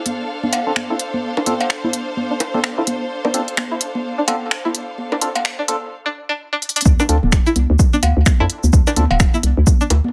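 A rich, bowed studio string section with biting vibrato opens this quirky, hypnotic minimal techno excerpt in D minor, pumping under sidechain compression until it stops at 5.9 seconds. Almost at once a layered, overdriven techno kit of finger snaps, smooth hi-hats and shaker sits up front, joined by congas, cowbell and bongos treated with small room ambience and delay. A twangy, warbling resonator pluck riff with phaser, chorus and dub echo, along with nasal, wave-folded organ stabs, moves through a filter-swept build-up over a swung 128 BPM groove on a Dm7 chord. After a drum fill at 6.6 seconds, the drop lands at 6.9 seconds as a punchy, dry overdriven kick and a hollow, bouncy FM bass enter up front, the bass pumping under sidechain compression. The mix carries a light reverb and a high-pass filter across the whole.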